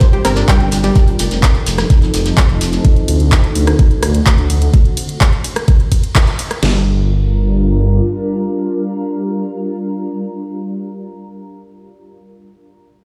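This emotional, expansive progressive house excerpt opens mid-drop with a lush, punchy unison pluck melody and a round analog pluck arpeggio, both pumping with sidechain and trailing delay, over a shimmering, ethereal pad steeped in chorus, phaser and its own reverb. Two layered, overdriven electronic pop kits drive the groove, one up front with a knocking kick, deep snare and crash, the other carrying handclaps, hi-hat, ride and rim click, while a distant acoustic soul kit and a grainy shekere sit faintly beneath a rumbling, detuned saw bass. The plucks fall away by 0.9 seconds, and after the pop kits stop near 6.7 seconds the bass carries on briefly while the pad lingers to 11.2 seconds in a stone-room ambience.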